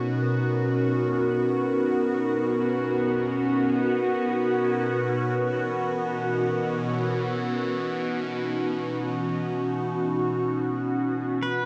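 Soaked in a wet spring reverb on a home cassette recording, this serene, weightless ambient fragment floats on a bright, morphing wavetable pad with phaser, moving from Bmaj9 to C#m9 at 5.0 seconds over a nasal, string-like bowed drone with vibrato, while a barely audible, ringing handpan sounds only until 1.4 seconds and a clean, fingerpicked electric pedal steel guitar slides in on a single B4 at 11.4 seconds.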